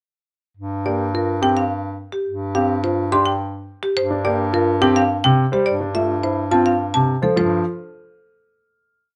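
In a straight triple metre, this brief, hypnotic piece of minimalist classical pattern music carries an urgent pulse from repeated short cells. A clear, distant bass clarinet enters first at 0.6 seconds, holding long low notes. A bright, woody marimba struck with hard mallets carries the percussive melody up front, while a polished grand piano adds short-sustained accompaniment and a mellow, dark concert grand weaves arpeggios above it, all in light reverb before the piece settles on a final chord at 7.4 seconds.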